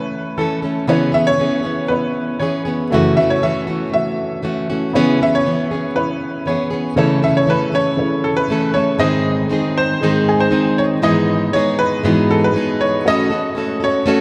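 Acoustic pop with a tender, reflective mood, this piece opens on a fingerpicked, full-bodied jumbo steel-string acoustic guitar carrying the accompaniment up front, while a bright upright piano with a woody, slightly detuned tone, short sustain and audible action noise sings the melody close by. At 0.9 seconds a felt-muted upright piano joins in the background, its mellow, vintage softness filling out the harmony, and the music moves into a new section at 9.0 seconds. The whole arrangement sits in a vast, echoing cathedral-like space that lends it a spacious feel.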